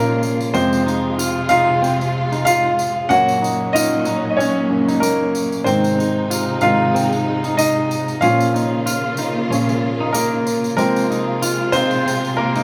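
Piano-driven pop at 94 BPM in 4/4 with a light sixteenth-note swing, this uplifting, hopeful passage cut from a longer piece moves through Bbm, Fm, Gb and Ab while a clear, polished baby grand sits up front and carries the lead throughout. Behind it, a lush, distant string section holds bowed chords with vibrato and portamento, a slightly broken-up, twangy electric guitar plays a compressed fingered riff, and a jingly, bright tambourine joins at 0.2 s. The band sounds as if playing live together in one large studio, bathed in a wet reverb.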